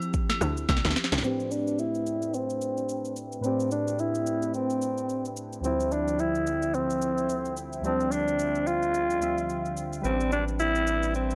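A hollow, flute-like pad pumps softly in the background over an electronic afro-pop kit with a deep kick, sharp snare, rim click and shaker, all roughened by vintage 12-bit sampler grit, while close, dry agogo bells and a punchy, tight log drum bass flash by in the brief opening section of this deep, soulful amapiano cut in A minor at 109 BPM with a swung 16th feel. From 1.2 seconds a breathy, raspy alto saxophone with vibrato and tape echo leads up front, supported by mellow, chorused electric-piano-like synth keys under a filter sweep as the chords move between Dm11 and Am11. A dark, round analog bass enters at 10.0 seconds, and the whole piece carries light reverb and the faint mains hum of a gritty hardware recording.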